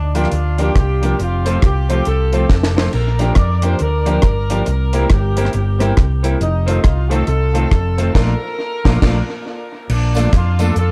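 A swung ska groove at 138 BPM in 4/4 drives this cheerful, bouncy Bb major passage, cut from a longer piece. Up front, a deep reggae drum kit with a high-tuned snare, tight kick, rim click, hi-hat and crash sounds dry and smooth, with tape echo and a short fill at 2.5 seconds. Beside it, a fingered electric bass gives a round, punchy, amped low end. A semi-hollow guitar supplies clean, picked accompaniment, while a clear upright piano adds woody stabs touched with tape echo. Above them, a distant, roomy horn section carries the melody with light vibrato and its own tape echo over chords moving from Gm7 through C7 and F7 to Bbmaj7. The band hits an accent from 8.1 seconds, and a jingly tambourine joins in the background at 10.1 seconds, all set in a dark production with light reverb.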